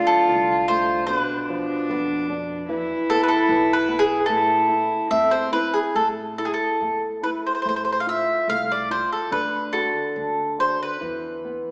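A fado-style ballad in A minor, passionate and longing, moving in a rubato 2/4 at around 68-77 BPM, cut from a longer piece. A round, double-strung mandolin carries the melody up front, while a pure, floating cello played sul tasto with a soft bowed attack adds a second line until 6.0 s, over thumb-plucked flamenco guitar with audible finger squeak and a woody, growly pizzicato upright bass sitting in the background. The players sit in a wet recital-hall reverb with a small-speaker quality, as the chords pass from Dm and Bdim through E5 and A5 before turning to F/A and D.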